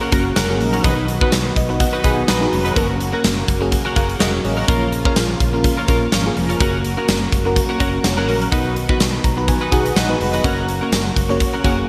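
This moody, dramatic 1980s-style pop excerpt moves at 125 BPM in 4/4, with a light swing on the sixteenths driven by a big, up-front rock drum kit of punchy kick, medium-tuned snare, hi-hat and tambourine. Beneath it, a dark, round fretless electric bass plays low in its register, amped and punchy. An FM electric piano with tremolo and phaser carries the accompaniment with fast-attack, decaying chords over a faint noise layer, and it breaks into fills at 1.3 and again at 9.0 seconds. A clean, compressed twelve-string electric guitar picks a riff through analog chorus and delay, while a bold, detuned sawtooth pad with a soft attack and a filter swell sustains brassy chords in the background. Very quiet, mellow synth brass adds stabs from 0.4 to 10.4 seconds, colored by a filter sweep, chorus and vibrato. The harmony circles Gb, B and Bbm, and the bright digital production is bathed in a lush hall reverb.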